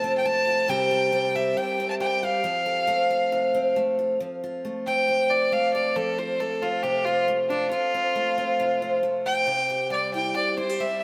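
In a straight 4/4 at 136 BPM, this heartfelt, nostalgic country excerpt in F major pairs a clear, up-front fiddle melody, bowed with light vibrato and an airy, intense edge, against a bright, full-bodied picked steel-string acoustic guitar with audible finger squeak, the fiddle taking a solo from 4.2 seconds, with the whole pair set back in the room under a wet plate reverb.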